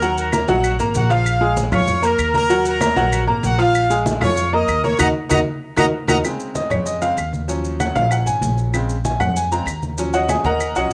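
Low-tuned congas, woody claves and grainy maracas drive this fiery, danceable salsa at 193 BPM in straight 4/4, where a growly pizzicato upright bass anchors the Ebm and Bbm7 changes beneath a worn, slightly detuned upright piano, while an up-front trumpet section with light vibrato and a cassette-tape tint carries the melody until a band accent from 5.0 to 6.2 seconds hands over to a brilliant piano solo running to 10.9 seconds, the whole captured as a lightly reverberant home cassette recording.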